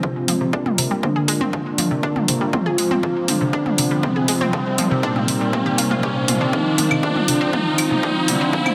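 Melodic techno at 120 BPM in F dorian, this short cut from a longer piece has a cinematic, melancholic mood and plays as a single build-up over a Fm, Bb7, Fm, Cm7, Fm progression. A punchy, overdriven electronic kick and an up-front, overdriven deep house kit with claves, hi-hat and toms drive the straight 4/4 pulse, with a drum fill arriving at 6.5 seconds. Bright, round analog pluck arpeggios with chorus and delay sit alongside brassy analog pad stabs coloured by chorus, cassette tape and delay, both breathing with sidechain pumping. Further back, a mellow portamento lead carries the melody with vibrato, lush chorus and tape echo, supported below by a smooth unison supersaw second line through a low-pass filter and delay, while a very quiet, moody analog pad holds dark sustained chords. Filter sweeps on the lead, supersaw and an analog pad, plus an electronic riser entering at 0.6 seconds, push the tension upward, all set in a moderate lush hall reverb within a dense, heavily limited modern master.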